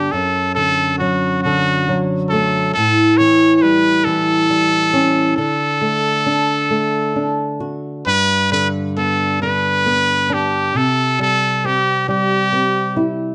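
A muted trumpet and a fingerpicked nylon-string guitar begin together, setting a sleepy, innocent lullaby in a gentle 6/8. The trumpet carries the melody as a solo voice, its straight mute giving a nasal, brilliant edge softened by a gentle attack, and it sits up front with a jazz inflection and a touch of plate reverb. Beneath it the guitar supplies a small, dark accompaniment that reaches down to its low register, also placed close and present. The harmony moves from D over F# through A7 and D to G, then turns to C near 10.7 seconds. The trumpet falls silent at 13.0 seconds, leaving the guitar to ring on briefly in a moderate studio room. This is a passage cut from a longer piece, tuned slightly below standard pitch.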